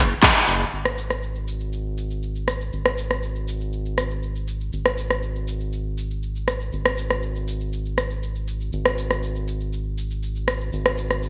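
A layered electronic pop drum kit sits up front from 0.1 seconds, its bright hi-hats, handclaps, rim clicks and shaker pumping against the sidechain, with a band accent at 0.2 seconds. Beneath it, a round, deep analog bass enters at 0.0 seconds, an evolving blend of square and sine tones with a wave-folded edge, a fast attack and a mellow sustain, pumping as it hovers between F#1 and G#1. This dreamy, emotional progressive house passage moves at a straight 120 BPM in 4/4, cut from a longer piece and set in a wet recital hall reverb with a digital sheen.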